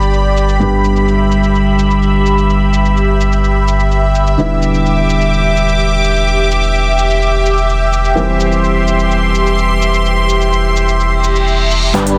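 Driven by a straight pulse in 4/4, this cut from a festival progressive house track feels anthemic and triumphant as it moves from G through Em7 to C/E. A lush, bright supersaw pad holds sustained chords up front with slow attack and phaser, pumping against the sidechain under a long filter sweep, while a dark, mellow baby grand piano plays accompaniment through tape echo. Underneath, a deep, thick saturated sub bass sits prominently, also pumping, and a very quiet big-room drum kit adds crisp hats, handclaps and shaker with an overdriven edge. A reverse cymbal rises from 11.2 seconds into a drum fill at 11.9 seconds, where a huge, detuned supersaw riff comes in, compressed and low-pass filtered with vibrato, alongside a barely audible punchy electronic kick. The mix carries light reverb and a dense, heavily limited modern master.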